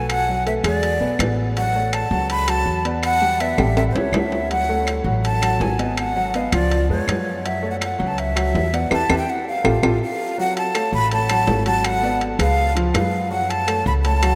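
A straight 4/4 Afro-Cuban jazz groove drives this fiery, sultry fragment from a longer piece: close, dry claves click in the background while ringing metal-shell timbales break into drum fills at 3.6 and 9.5 seconds, and the band hits an accent at 8.9 seconds. Up front, a breathy metal flute carries the expressive melody with a straight tone, soft attack and lifted highs, beside a dark, woody pizzicato upright bass on steel strings. A warm, vintage grand piano with smooth, short-sustained chords fills out the harmony, and the whole band sits in a vast, echoing cathedral space.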